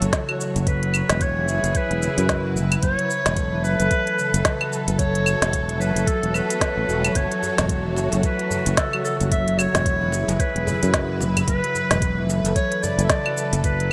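A swung 16th-note groove at 111 BPM drives this hypnotic, mystical organic downtempo passage, where an up-front electronic kit of woody snare, crisp hats, claves and shaker joins a soft, tape-warm electronic kick and a growly, punchy fretless bass with sidechain pumping, while a ringing fingerpicked concert harp plays arpeggios beneath dark, softly bowed strings with light vibrato that pump with the sidechain, a distant, roomy classical clarinet carries the delayed melody over F#m, Eadd9 and A, a tight, cracking djembe with metal rattles slips in behind from 7.4 s, and a lush hall reverb and bright 1980s-style digital production give it a warm sheen.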